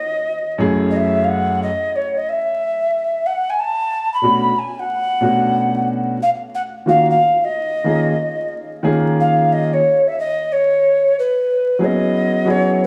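Cool and mellow, this swung hip hop fragment sets a breathy, clay-toned alto ocarina with chiff and unsteady vibrato, its melody carried with slapback echo, over a dark, smooth, vintage baby grand piano that enters at 0.6 seconds with long-sustaining ninth chords, all under vinyl crackle and a moderate plate reverb, before the ocarina takes a solo from 8.8 seconds over suspended harmonies.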